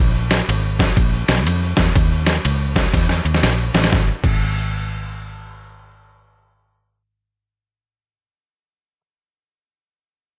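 A dry, close-sounding fragment of uptempo gospel, cut from a longer piece, carries a solemn yet fervent mood over a swung eighth-note feel in 4/4. A fingered electric bass holds the low end from the opening, dark and round with a foam-muted, direct and amped tone, moving between G#1 and E#2. A lo-fi sampler-style drum kit sits up front, compressed, pitched down and muffled, with a thumpy kick, a medium-tuned snare, ride and crash cymbals, and a tape-warm character. A drum fill runs from 2.9 to 3.9 seconds, leading into the second section, and the kit drops out at 4.3 seconds. From there the bass carries on alone until it stops at 9.0 seconds.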